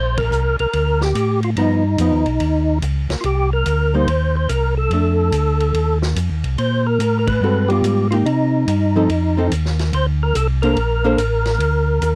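A swung 4/4 groove drives this greasy, soulful slice of soul jazz organ trio, cut from a longer piece, with the band hitting accents together at 0.1 and 7.2 seconds. A vintage acoustic drum kit of hi-hat, kick, snare and ride sits low in the mix, its dark cymbals, punchy kick and rolled-off top giving the pulse a muffled weight. Alongside it, a mellow tonewheel organ carries the bass line up front, round and clean with a touch of key click through a slowly turning rotary speaker. Also up front, a second tonewheel organ takes the melody in a fat, lightly overdriven voice, with percussive third-harmonic attacks, chorus vibrato and slow rotary swirl. From 1.6 seconds an amplified hollow-body archtop guitar adds picked, clean, shadowy accompaniment through jazzy changes such as Bbmaj9, G7b9 and Cm7. The whole trio has a dry, close 1970s-style studio sound with only light reverb.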